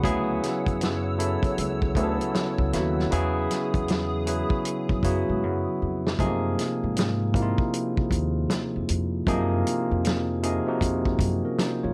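A moderate studio reverb surrounds this smooth, soulful neo-soul and R&B excerpt at 78 BPM with a 16th-note swing, where a bright, barky tine electric piano with subtle chorus sits up front over a woody pizzicato upright bass and a dry, mid-forward soul drum kit with a fat snare and tight kick, while a hollow, flute-like, warbling pad with ensemble chorus hovers in the background until 6.2 seconds, fading out as a drum fill from 5.4 seconds ends, as the chords move from Dmaj9 through Emaj9 to F#maj9.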